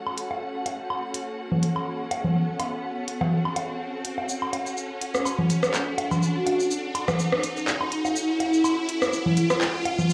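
Clinical, sparse minimal techno in a swung build-up cut from a longer piece, where an electronic riser runs throughout alongside a bowed studio string section with expressive vibrato and portamento, up-front analog electronic woodblock, congas and rim click echoing through delay, an overdriven click drum kit of clicky hats, handclaps and shaker, and a brief mellow, dark vibraphone note at 6.4 seconds, filtered and delayed, all in a dry, gritty small-room recording with light reverb.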